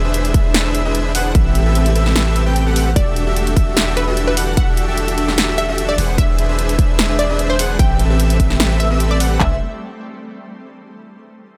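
A dreamy, lush future bass drop in E minor at 149 BPM in half-time opens on a shimmering, ethereal pad, a soft, airy lead arpeggiating with chorus and delay in the background, a huge, thick supersaw riff and a deep, mellow 808-style bass, all but the pad pumping with sidechain over E7b13, Am9 and Em11 chords. Punchy, layered electronic drums sit up front with kick, snare, handclaps, toms and hi-hat. At 3.0 seconds a bright, detuned unison pluck melody joins with delay, all in a fairly dry mix cut from a longer piece.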